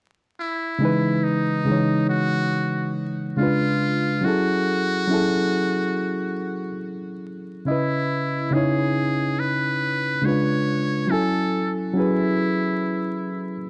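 A buzzy, thin muted trumpet with light vibrato plays a jazz-style solo melody from 0.4 s, its tape echo drifting over a reedy, bright electric piano that enters at 0.8 s with cassette-tinged chords moving through C#m9, C#7b9 and F#m7 in F# dorian, giving this nostalgic, hazy hip hop fragment, cut from a longer piece, a swung 70 BPM feel, with moderate spring reverb and vinyl crackle across a dark production.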